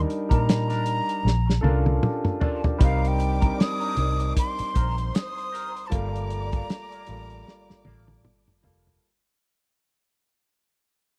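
Lush 1970s-style soul at 77 BPM in C dorian with a swung sixteenth feel, bittersweet and smooth, where a breathy jazz flute with vibrato carries the melody over an intimate concert grand piano, a round, foam-muted electric bass and a muffled, lo-fi soul drum kit with fills, while a dark, slightly broken-up electric guitar riff with wah and spring reverb sits in the background and a distant, bowed string section with portamento enters at 2.8 s as the excerpt begins to fade out, captured in a close, dry studio recording with faint mains hum.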